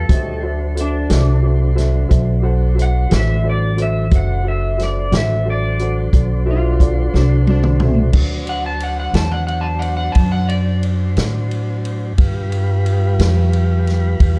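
A twangy, slightly broken-up electric guitar through a small old amp sings the melody with lush chorus over smooth tonewheel organ chords turning on a slow rotary speaker and a thumpy, woody pizzicato upright bass, as a punchy, up-front vintage drum kit and a slightly detuned upright piano with long sustain join this rollicking, swaggering slow blues in a dark, warm production, before an electric slide guitar played with fingerpicks slips in at 6.5 s and takes a solo from 8.2 s.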